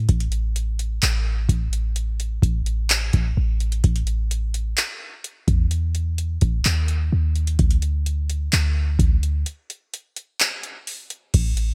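A clean, dark 808-style sine bass with a fast attack and decaying notes between A1 and E2 opens this longing, sensual contemporary R&B excerpt at 64 BPM in 4/4, joined a moment later by a booming analog drum machine with a deep kick, metallic hi-hats, handclaps, crash cymbal and gated reverb, both parts sitting up front within a dry, bright 1980s-style digital production that reaches a break from 9.5 to 11.3 seconds.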